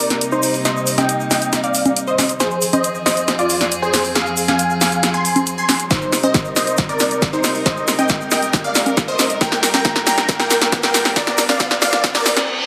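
A moderate digital room reverb and a high-pass filter shape this bittersweet, driving uplifting trance build-up, cut from a longer piece. Up front, a detuned, sawtooth supersaw stab carries the melody through a filter sweep, sidechain pumping and digital delay, while a reedy, gut-string chamber section holds sustained chords over Cm7, Fm and Gm, and a punchy, tape-warm analog drum machine plays a long fill of congas, hi-hat and snare with a grainy egg shaker in the background. An electronic kick joins at 5.9 seconds, a very quiet riser leads to a reverse cymbal at 12.0 seconds, and the music breaks at 12.5 seconds.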